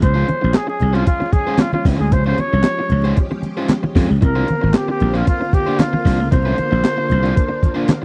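Funk with a strutting swagger, this short cut from a longer piece sets a raspy, growling trumpet melody with scooped notes and vibrato over crunchy overdriven guitar, a punchy, growly slap bass up front that drops out at 7.3 seconds, a gritty breakbeat sampler-style kit of thumpy kick, snare, hi-hat and handclaps, very quiet low-tuned congas, and shimmering string-machine violins in the background, moving from Dbmaj7 to C9sus4 in a dry, close 1970s-style recording dusted with vinyl crackle.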